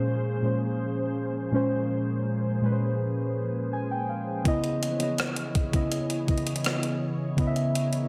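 Sensual and moody, this short contemporary R&B passage moves at an unhurried pace in a straight four, cut from a longer piece. Muted, felt-like synth keys sit up front with a soft, intimate, dark tone, their fast attack and decaying notes coloured by chorus as they carry the accompaniment from the opening through 8.1 seconds. Beneath them, a glassy, ethereal FM pad holds sustained chords with a slow attack and long release, its ensemble chorus and built-in reverb lending a shadowy shimmer. The keys slip in a brief fill at 3.4 seconds, just before a gated 80s digital drum machine arrives at 4.5 seconds with a thumpy kick, hi-hat and rim click, overdriven and captured in a large room, placed close in the mix. The harmony shifts from A#m9 to C#m9 as the drums enter, and a light reverb gives the whole a gentle sense of space.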